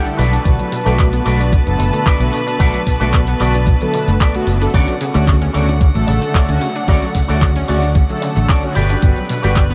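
A dreamy mix soaked in a huge ambient reverb frames this groovy, feel-good nu-disco excerpt at 112 BPM in D major, moving from Bm7 to Dmaj7 and touching Gmaj7 at 8.8 seconds. A thumpy electronic kick enters at 0.5 seconds beneath an overdriven, layered pop kit of handclaps, hi-hat and shaker, while a bright, punchy fingered bass with an envelope filter sits up front. Mellow, brassy synth brass with chorus, vibrato and sidechain pumping carries the accompaniment, an earthy chamber violin section holds bowed chords, a dark, clean envelope-filtered electric guitar picks a riff through analog chorus and delay, and a detuned sawtooth analog pluck ripples arpeggios in the background.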